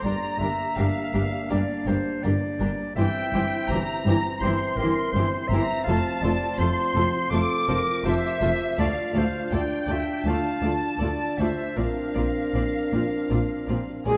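This cinematic, emotional film score for orchestra moves at 82 BPM in 4/4 with a rubato feel, set in G dorian and carrying a sorrowful, longing mood. Muted violins with a veiled, distant tone carry the melody over a second, lusher violin line, while a clear, close-miked clarinet adds its own line and a pure silver flute contributes another in the background. Con sordino violas fill in the accompaniment, a mellow French horn section holds sustained chords with a smooth top, and muted cellos and double basses anchor the low end. The harmony moves from Gm7 through C/G, F and Dm before settling on Bbadd9 at 11.8 seconds. At 14.1 seconds a solo French horn takes a brief melodic note alongside an up-front cor anglais with a vintage character, just as this cut from a longer piece closes at 14.2 seconds. A moderate scoring stage reverb and a dark production give the whole a softened, enveloping sound.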